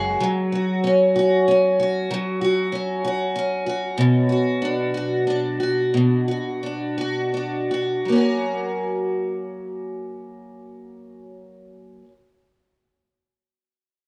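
A double-tracked, picked steel-string acoustic guitar with an up-front parlour tone carries this heartfelt, tender pop excerpt in 6/8, moving at a slow 52-64 BPM in F# major with a tuning of A4 = 444 Hz. Bathed in a wet spring reverb with a 2.4-second tail, it plays the accompaniment from F#5 to Bm, slowing down between 4.0 and 8.1 seconds before arriving on F#. The guitar falls silent at 12.1 seconds.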